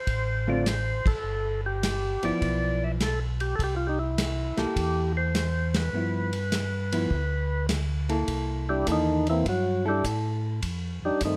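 A swung 4/4 groove at 102 BPM drives this soulful, bluesy soul jazz organ trio excerpt, with a small-room acoustic kit of tight kick, medium-tuned snare, hi-hat and dark, rolled-off ride cymbal underneath a round, mellow organ bass line. The melody sits up front on a full, percussive tonewheel organ with key click and a slow rotary speaker, while a clean, picked hollow-body electric guitar comps through chords such as Dm7, G13 and C13. The band hits accents at 0.9 and 5.6 seconds before the organ breaks into a solo at 8.3 seconds, all in light reverb.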